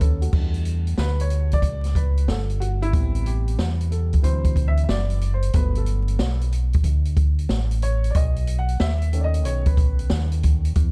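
Mellow, smoky jazz-hop in E dorian, this fragment of a longer piece rides a swung 16th-note groove at 92 BPM, with an acoustic jazz kit up front pairing a boomy kick and high-tuned snare with hi-hat and dusky cymbal crashes, while a round, fingered electric bass sits close and deep underneath. A dark, worn concert grand, intimate and natural with audible action noise, takes a solo from 0.3 s over Em11, Am9, D9, Gmaj9 and B7 chords. Vinyl crackle and small-room ambience lend the whole a hazy, lived-in texture.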